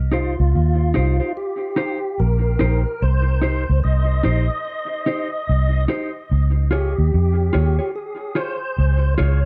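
A swung sixteenth-note lilt at 73 BPM in 4/4 carries this hypnotic, serious roots reggae fragment in C phrygian, where an up-front, foam-muted fingered electric bass sits dark and round beneath a clear tonewheel organ melody with key click, chorus vibrato, slow rotary speaker and tape echo, while a mellow, compressed electric guitar adds clean accompaniment through its own tape echo, all in light reverb as the harmony moves from Cm to Db at 6.3 seconds.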